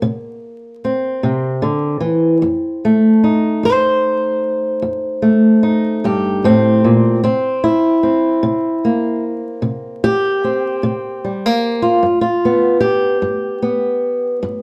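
Acoustic country blues with a rollicking, gritty mood, this brief cut from a longer piece moves at 50 BPM in 12/8 as a lone fingerpicked old ladder-braced acoustic guitar, dark and boxy and sitting up front, ranges from F2 to C5 through C7, F7 and back to C7 before landing on G at 12.0 seconds, all heard from further back in a small, wet room with vinyl crackle beneath.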